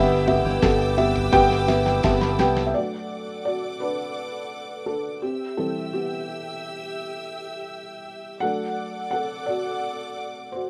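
A soft, felt-muted upright piano leads this hopeful, warm piano-driven pop piece at 85 BPM. Its dark, intimate tone sits up front with audible action noise, over lush, bowed studio strings holding sustained chords through plate reverb. At the start, a very quiet, full-bodied steel-string acoustic guitar picks a riff, a punchy fingered electric bass holds the low end, and a compressed, pitched-down sampler-style drum kit with a thumpy kick plays a fill alongside a piano fill. The guitar, bass and drums are gone by 2.8 seconds, when the piano takes a solo over the strings, moving through D and C chords in a rough home-demo mix cut from a longer piece.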